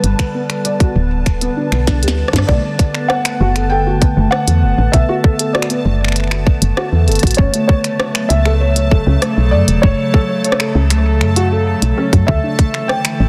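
Cerebral and glitchy, this IDM excerpt sets two felt-muted upright pianos, one carrying a soft, intimate melody through tape echo and the other spinning gritty arpeggios through digital delay, over a warbling, nostalgic pad of sustained chords and a faint bubbling texture of resonant, random filter steps. A woody, round FM bass and a tight electronic kick sit up front, while a glitchy kit of finger snaps, clicky hats, rim clicks and a tiny, softly clipped snare fills in the groove. A drum fill leading into a band accent around 2.5 seconds marks the shift from G to Bm7, all within light digital ambience and a dense, heavily limited master.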